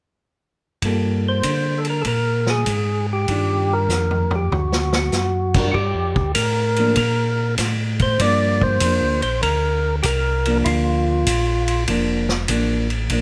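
Soulful and late-night, this swinging soul jazz organ trio excerpt sets a fat, lightly overdriven tonewheel organ melody with percussive third-harmonic attack from 1.3 s against a round, dark organ bass with key click, both turning on a slow rotary speaker, while a clean hollow-body jazz guitar comps and a punchy, mid-forward vintage drum kit adds a fill at 3.9 s, all captured up close with light reverb.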